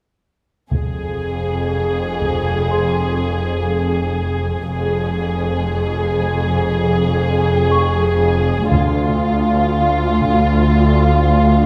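A wet scoring-stage reverb with a 1.9-second decay wraps this tense, mysterious suspense cue, cut from a longer film score in F minor at a slow 60 BPM in straight 4/4. Con sordino strings carry it from 0.7 seconds: an up-front violin section sings a lush, vibrato-rich melody between F4 and Ab4, while cellos with a dark, soft attack and warm double basses hold the low end in a veiled, muted haze. Taiko drums struck with heavy sticks thud under the opening two seconds, their vintage, band-limited tone adding weight. A small celesta joins at 2.7 seconds, sitting in the background with a delicate, bell-like shimmer high in the register. The harmony rests on F minor until it shifts to D minor at 8.7 seconds, where the taiko returns briefly before the strings and celesta carry the passage to its cut.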